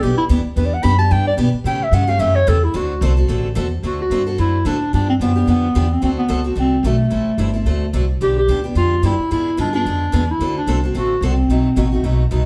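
Playful, swinging acoustic string swing in the jazz manouche style, this excerpt features a warm, up-front clarinet with jazz vibrato taking a solo through the first 3.8 seconds before carrying the melody on, over a woody, thumpy pizzicato upright bass and a bright, boxy picked parlour guitar comping through a jazzy run of seventh and diminished chords, all set in a wet studio reverb that places the listener further back in the room.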